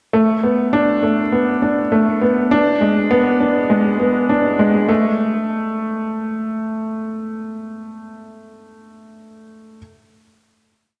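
A lone upright piano, woody, slightly detuned and up front with audible action noise and delay, plays a 16-step arpeggiated sequence in B dorian at 101 BPM, building from 0.1 seconds to a final note at 4.9 seconds that rings out in a wet, spacious reverb, giving this short electronica piece a moving, melancholic, intimate mood.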